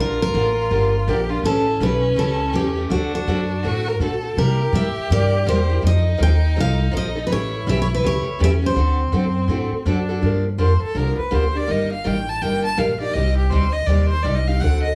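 A small, moderately reverberant room frames this short cut from a longer piece of acoustic string swing in the jazz manouche style, played at 164 BPM in G minor with a swung feel. A bright, full-bodied picked steel-string guitar carries the melody up front, its line coated in plate reverb, and it drops out at 9.8 seconds. Beneath it, a second picked steel-string guitar supplies warm, boxy accompaniment with a touch of finger squeak, while a plucked upright bass on gut strings thumps out a dark, up-front low end. A clear, focused violin with vibrato traces a second line from the start, then takes a virtuosic solo over the closing section from 10.2 seconds. The harmony moves through Gm7, A7, D7, C7 and F7 before settling on Gm7, Eb/G and Cm as the piece shifts into its second section.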